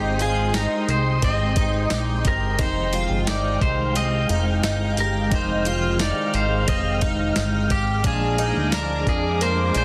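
Dream pop at 88 BPM in F dorian, this short excerpt from a longer piece feels haunting and ethereal, moving from Abmaj7 to Fm9 and then to Bb7 at 8.0 seconds. A slightly broken-up electric guitar carries the melody with delay, while a second twangy electric guitar at the edge of break-up plays accompaniment through tremolo and analog chorus. A vintage, warbling organ-string ensemble holds soft-attack sustained chords, and a bright, shimmering twelve-string acoustic guitar picks octave-doubled arpeggios through chorus and delay. Underneath, a fat, dark analog bass with a detuned sawtooth edge and moving notch sits up front, joined at 0.2 seconds by a gritty, sampler-style soul drum kit with a thumpy kick, medium-tuned snare, hi-hat and tambourine. Light reverb frames the parts, and the master is dense and heavily limited in a modern way.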